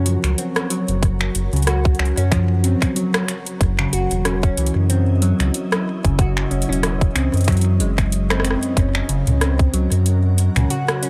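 IDM at 93 BPM in 4/4, with a light 16th-note swing, this short excerpt from a longer piece feels wistful and playful as it moves from Gb to Dbmadd9 at 3.6 seconds and back to Gb at 8.8 seconds. A glassy FM pad holds sustained chords far in the background, its slow attack and long release softened by ensemble chorus and its own ethereal reverb. A harp-like synth pluck rings out arpeggios with a mellow, decaying tone, thickened by chorus and delay, while a round, dark analog bass with tube saturation sits up front beneath it. A booming analog drum machine supplies finger snaps, metallic hi-hats, rim clicks and toms with delay and a tape-tinged, small-room character. A tight, produced electronic kick joins at 1.0 seconds and drops out at 9.7 seconds, and the overall sound is dry, with a faint mains hum underneath.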